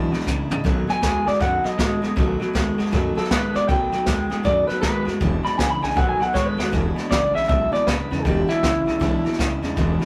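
A retro, rowdy rockabilly excerpt at 158 BPM with a swung feel opens on a twangy, slightly broken-up electric guitar riff, a full-bodied picked acoustic guitar and a woody, thumpy pizzicato upright bass over E7 and B7, joined at 0.1 s by a roomy brush drum kit with a boomy kick and fills at 0.3 and 6.3 s, while a bright, twangy lead guitar carries the melody from 0.9 s in a rough rehearsal-room sound with tube saturation and light reverb.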